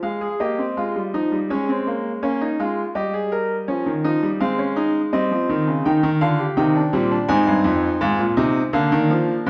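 A brilliant, up-front concert grand piano with deep bass and long sustain carries this stately yet lively baroque-style four-part fugue in Ab major at 82 BPM, a brief passage cut from a longer classical piece and heard in a reverberant recital hall.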